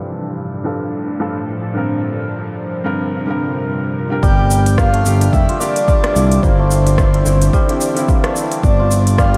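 Organic downtempo in G dorian at 109 BPM, this short excerpt has a mystical, meditative mood, with a 16th-note swing and a dreamy mix soaked in a huge ambient reverb. It opens with a soft, felt-muted upright piano and a tense, string-like bowed drone carrying sustained chords over Dm/G and Bbadd9/G, while a filter sweep runs through the first 4.2 seconds. At 4.2 seconds the texture fills out: a breathy, flute-like synth lead takes the melody with subtle chorus and vibrato, a hammered santur adds shimmering, ringing arpeggios, and a smooth gliding synth bass with portamento sits up front. A punchy, layered electronic kick drives the groove alongside an overdriven organic electronic kit of smooth hats, rim clicks and shaker, dulled by low-pass filtering. Sidechain pumping breathes through the piano, drone and bass, and analog delay trails the piano, lead and santur as the chords move through Gm and Cadd9/G; the piano drops out at 8.6 seconds as the harmony returns to Dm/G.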